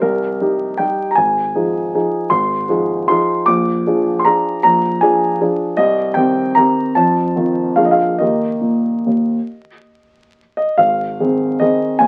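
A lilting waltz pulse in 3/4 drives this short classical piano piece, moving with a supple rubato that lets the tempo drift between 132 and 166 BPM. Set in Eb major, it carries a playful, elegant mood, drawn from a longer work. A single concert grand plays alone from start to finish, spanning Ab1 to D6, its tone rich in the bass, polished and close, with notes that fade quickly. The harmony opens on Cm and moves through Fm7/Ab, Bb7 and F7 before settling on Eb at 8.2 seconds, then a new section begins at 10.8 seconds on Ab. Light reverb surrounds the instrument, and the whole sound carries the crackle and patina of a very old 78 rpm record.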